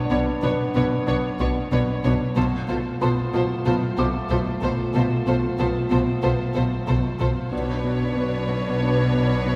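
A mysterious, tense cinematic excerpt at 93 BPM in straight 4/4 opens with a French horn section holding sustained chords in the background. Alongside it, a felt-muted upright piano adds a soft, boxy texture high in its register, with its action noise audible. Almost at once the strings enter: a studio violin section carries the melody with a pure, floating sul tasto tone, a second symphonic violin section traces a quieter line beneath it, and a dark, woody viola section fills in lush, vibrato-tinged accompaniment. The low end is heavy, with a dark double bass section and a cello section anchoring the bass while a fat, saturated analog synth bass plays a riff, built from detuned sawtooth and square waves with a filter pluck. The harmony moves from Bmadd9 to F/B and back to Bmadd9 at 7.5 seconds, when the piano stops, and the horns drop out at 9.0 seconds. The ensemble sits in a wet concert hall reverb with a 2.4-second decay, giving the piece a cavernous, suspended air.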